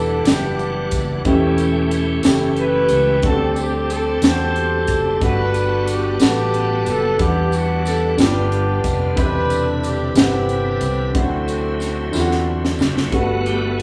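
A live-room band sound bathed in lush studio reverb carries this jubilant, soulful slow gospel excerpt in 6/8 at 61 BPM in G major, moving through rich ninth and seventh chords. A roomy, up-front horn section sings the melody over a woody upright piano with audible action noise, shouting tonewheel organ chords turning through a slow rotary speaker with chorus vibrato, and a round, punchy fingered electric bass. A crisp fusion drum kit with a high-tuned snare and punchy kick, backed by a jingly tambourine, plays a fill from 12.1 s, and a very quiet, mellow French horn section enters with sustained chords at 13.1 s.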